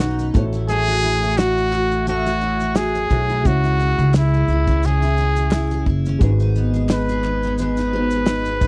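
A breathy, whispered trumpet with light vibrato carries the melody up front in this reflective, tender acoustic pop excerpt in C# minor at 87 BPM with a gentle swing, over a woody pizzicato upright bass, a full-bodied double-tracked picked jumbo acoustic guitar, a mellow felt-muted upright piano with audible action noise in the background, a loose indie drum kit of tight kick, snare and shaker with a rolled-off top, and very quiet crisp group handclaps, all captured in a dry, close 1970s-style studio sound as the chords move from F#m7/A to C#m to G#m7.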